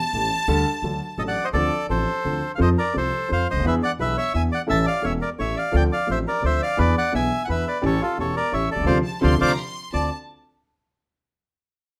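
A moderate studio reverb gives this tense, melancholic tango a modest sense of room, in a short cut from a longer piece in D minor, played in 3/4 at 172 BPM with a rubato feel. A clear, floating violin section, bowed sul tasto and placed up front, opens alone on a high line before the reedy, close-miked bandoneon takes the melody at 1.2 seconds, sounding dry, full and warm at the front of the mix. Beneath it, a dark, mellow concert grand piano supplies the accompaniment with deep bass, a vintage character and audible action noise, while a woody, thumpy pizzicato upright bass with steel strings anchors the low end. The harmony moves from Dm7 through F7, E7 and A and back, settling on Dm7 as the band plays an accent at 8.9 seconds. The pure violin section then returns at 9.0 seconds, rejoining the bandoneon as the passage closes.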